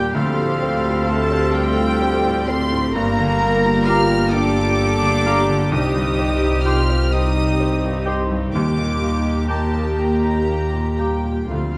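Moving in a slow, rubato 6/8 at 43 dotted-quarter beats per minute, this hopeful, moving cinematic passage is cut from a longer piece and unfolds over Dm7, Gm7, Cm and Ebmaj7. A chamber violin section carries the melody from F5 to F6 with light vibrato and a soft, sul tasto touch, joined in the same range by a pure, floating symphonic violin section playing a second line. Oboe, small flute group and clarinet weave second lines in the background until 11.2 seconds, the oboe clear with a vintage classical colour and the flutes crisp in attack. Beneath them a mellow French horn section holds tight sustained chords, a concert harp rings out fingerpicked arpeggios, and a felt-muted upright piano adds intimate accompaniment with audible action noise alongside a background viola section. The rich double bass section sits up front in the low end while a distant cello section floats above it, all set in a dark, warm production with a moderate scoring stage reverb.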